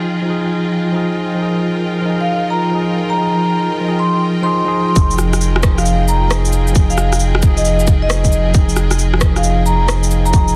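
A bright, clean tine electric piano and a rich, smooth bowed string section open this wistful, nocturnal future garage excerpt in F minor, resting on an Fm7 chord, with the piano carrying vintage 12-bit sampler grit and tape echo, and both parts breathing with sidechain pumping. At 2.2 seconds a vibraphone played with soft mallets enters with the melody, its metallic, ringing tone mellow and set forward, trailed by analog delay. At 5.0 seconds the groove arrives at 134 BPM in 4/4 with a 66% swing on the sixteenths: a tight, tape-warm electronic kick sits up front, joined by electronic shaker, rim click and cabasa, the snare softly clipped. A deep, round sine sub bass holding F1 enters at the same moment, its fast attack and sustained body also breathing with sidechain pumping. Light reverb, vinyl crackle and a dense, heavily limited modern master frame the sound, and the passage is cut from a longer piece.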